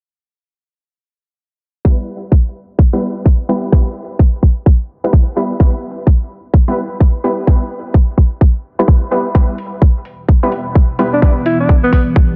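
A bright, punchy orchestra-hit-like synth stab and a tight, up-front electronic kick open this swaggering, bouncy bass house cut at 1.8 s, moving at 128 BPM in E minor with a swung 16th feel while a filter sweeps across the sawtooth stabs, which carry reverb, tape echo, cassette grit and sidechain pumping. A faint electronic hi-hat slips in behind from 9.6 s, followed by a deep, moody ambient pad of detuned sawtooth and sine layers with chorus and pumping. A breathy alto saxophone with light vibrato and tape echo briefly takes the lead at 11.1 s, all within a dense, heavily limited, low-passed master.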